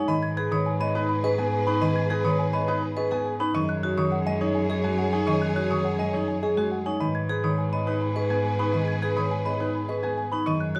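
Propulsive and hypnotic, this excerpt of minimalist classical pattern music moves at 104 BPM in 3/4 and G# minor, cycling from G#m to F#sus2 at 3.5 seconds and back to G#m at 7.0 seconds. A natural-toned grand piano carries the melody over fingerpicked concert harp accompaniment, while a delicate, bell-like celesta and a metallic vibraphone struck with hard mallets ring out arpeggios. A mellow French horn with light vibrato sits in the background on a second line, a bowed string section holds rich, expressive sustained chords, and a smooth, clear solo cello anchors the bass up front, all within light reverb.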